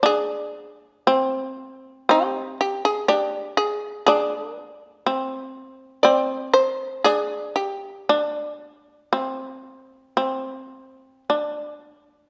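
A bright, buzzing shamisen opens this calm, austere excerpt of Japanese traditional music, holding a low second line while a second shamisen enters almost at once with the melody, which is powerful and warm in tone. Both fretless instruments are plectrum-plucked with a percussive bite and sit up front, moving in a free, rubato 4/4 at roughly 51-62 BPM. A moderate recital-hall reverb surrounds the pair; the melody ends at 11.2 seconds and the second line rings on until 12.3 seconds.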